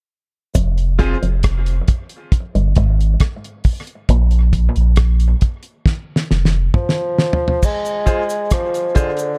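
A solo bassoon with light vibrato carries the melody from 6.8 seconds in this deep, hypnotic dub reggae excerpt at 68 BPM in F dorian, set over a round sub bass, a dry, damped 70s drum kit with a fat snare and a drum fill, a twangy electric guitar riff with an envelope filter, spring reverb and tape echo, brief brilliant baby grand piano stabs, a clean hollow-body guitar in the background, and a cabasa that returns at 7.6 seconds.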